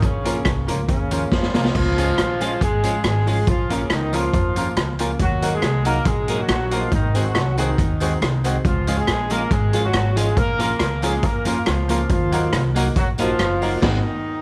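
Energetic and mischievous, this short ska passage, cut from a longer piece, rides a straight 4/4 groove under a dark horn section that carries the melody up front, its octave-doubled ensemble sound touched by light vibrato and a distant, roomy quality. A raw garage drum kit sits just as far forward, gritty and saturated with a boomy kick, medium-tuned snare and rolled-off top, marking the opening with a fill at 1.3 seconds before the main section settles in. Underneath, a pizzicato upright bass gives a woody, growly, thumpy low end. In the background, a clean semi-hollow electric guitar with phaser plays accompaniment, while a clear, slightly detuned upright piano adds stabs with long sustain. A very quiet, jingly tambourine sits close and dry in the mix, and the band closes on an accent at 13.8 seconds, all within light reverb.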